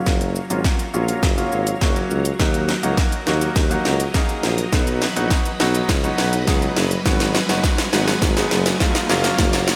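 A straight 4/4 dance-pop groove from a punchy, up-front house drum kit, with a cracking snare and gated reverb, drives this bittersweet fragment, which plays as one continuous build-up with a drum fill and a filter sweep throughout. A warm tuba with light vibrato carries the bass beneath clear, polished baby grand piano chords, while a shimmering, vintage string machine of sawtooth violins holds soft-attack chords in the background; tuba, piano and strings all pump with sidechain compression, and the piano and strings also pass through a low-pass filter. The harmony moves through Gbmaj7, Ebm, B and Abm7, and a very quiet electronic riser enters at 5.1 s, all set in a lush hall reverb with bright 1980s-style digital production.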